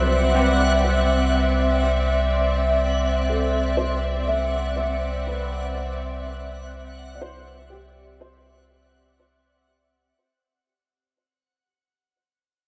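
This serene, luminous ambient fragment opens with all its parts at once over a single Cmaj7 chord in C lydian, moving at a slow 61 BPM in 4/4 with a straight feel, while a fade-out runs across its full length. Up front, a muted studio string section holds veiled, con sordino chords with vibrato, anchored by a round, sine-like sub bass sustaining a deep C2. Further back, a felt-muted upright piano carries a soft, boxy melody with audible action noise, coloured by analog chorus, delay and shimmer reverb until 9.6 seconds. A clean, twangy electric guitar plays arpeggios with the same chorus, delay and shimmer treatment, dropping out at 5.2 seconds. Above them hovers a reversed, granular texture, detuned and bright, drenched in lush chorus and shimmer. A plate reverb soaks the dreamy mix, and the piece is tuned slightly low, to A4 = 439 Hz.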